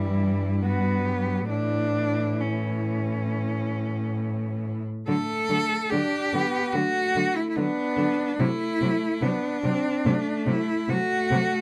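Flowing in a rubato 4/4, this tender, serene classical excerpt for cello ensemble places a bowed melody of close, even vibrato up front, alongside a second cello line shaped by soft attacks and expressive portamento. Beneath them, a focused accompanying cello sits in the background while a warm bass cello with a smooth top anchors the harmony, set in light reverb. The music moves into a new section at 5.1 seconds.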